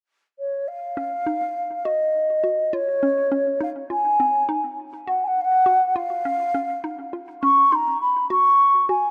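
A wooden flute opens at 0.4 seconds with a pure, mellow tone, its tongued notes carrying a gentle vibrato and a trail of tape echo as it sits up front in the mix. At 1.0 seconds, a bouncy square-wave synth pluck joins underneath, playing arpeggios with a fast attack and short decay, colored by chorus, phaser and its own tape echo. This driving, tense progressive instrumental moves at 204 BPM counted in eighths, in an uneven 11/8 metre with a straight feel and a home key of Eb minor. The harmony cycles through Ebm7, Db, Ab7 and Db before returning to Ebm7. Light reverb and a rough home demo mix give the sound an unpolished, intimate character, and both parts play through to 9.1 seconds in what is cut from a longer piece.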